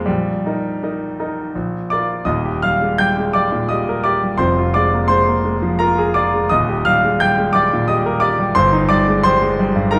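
A rubato 3/4 lilt at 80-89 BPM carries this lyrical, warm excerpt of a romantic classical character piece in Eb major, where a bright, polished concert grand plays alone from Eb1 to G6 with deep bass and short sustain, set in a wet recital hall reverb heard from further back in the room, its harmony moving through Eb, Bb and Bb7/F before resting on Eb/G at 8.6 seconds.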